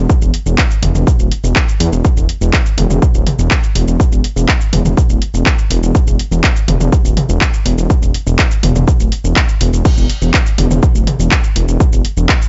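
Dark and cinematic, this melodic techno excerpt moves at 123 BPM in a straight 4/4. It is built on a menacing, evolving detuned saw bass, saturated and up front, with a filter swell and sidechain pumping, running from D1 to E2. A heavy, tape-coloured electronic kick sits forward in the mix beside a layered techno kit of crash cymbal, handclaps, hi-hat, shaker and toms, all kept dry and dull with nothing above 7.8 kHz.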